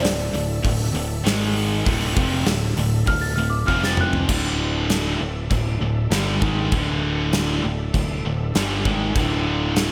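Filling a big arena with lush hall reverb, this anthemic, powerful hard rock excerpt at 98 BPM sets a delicate, slightly out-of-tune celesta melody with digital delay over a punchy bass, a double-tracked overdriven guitar riff alongside a scooped, high-gain distorted guitar riff, a very quiet gritty tonewheel organ holding sustained chords through a slow rotary speaker, and an up-front gated 80s drum kit with bright cymbals, whose fill at 3.7 seconds leads to the celesta stopping at 4.3 seconds.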